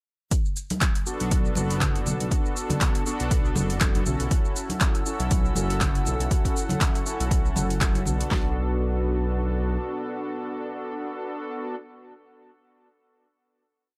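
A punchy, overdriven deep house kit drives this short, spiritual afro house piece at 120 BPM in B minor, its four-on-the-floor kick, fat snare and claps layered with an afro-pop kit of metallic hats, shaker, snaps and backbeat claps, plus bright, hard-handed interlocking congas. Over the groove, mellow synth brass plays close-voiced held chords with syncopated pushes through chorus and tape echo, while a smooth gliding synth bass carries a syncopated riff with portamento and vibrato, both with sidechain pumping. A moody, nasal analog pad enters in the background at 4.3 seconds, and after the drums stop at 8.4 seconds the brass and pad hold a final Bm7 chord until 11.8 seconds.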